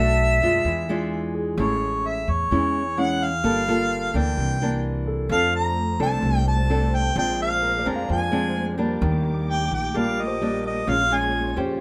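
A roomy harmonica with light vibrato and scooped notes carries the jazz-style melody of this sophisticated, romantic bossa nova excerpt over fingerpicked nylon-string guitar with finger squeak and a woody, growly pizzicato upright bass, while a polished grand piano touches in at 1.3 seconds and returns in the background at 5.1 seconds, joined at 5.3 seconds by a dark, lush bowed string section with soft attack and portamento, set in light reverb.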